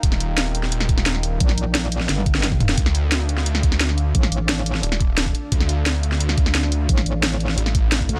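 A dark, mechanical technical drum and bass passage at 175 BPM in D phrygian, tuned to A4 = 436 Hz, opens with an overdriven knocking kick, a cracking up-front snare with hi-hat and toms, a thick detuned sawtooth bass and a deep, moody pad sitting in the background with its own reverb, both pumping against the kick, before an aggressive metallic FM wobble bass cuts in at 1.4 seconds, a drum fill arrives at 2.1 seconds, and the harmony moves from Eb to D minor at 2.8 seconds in a dry, close mix.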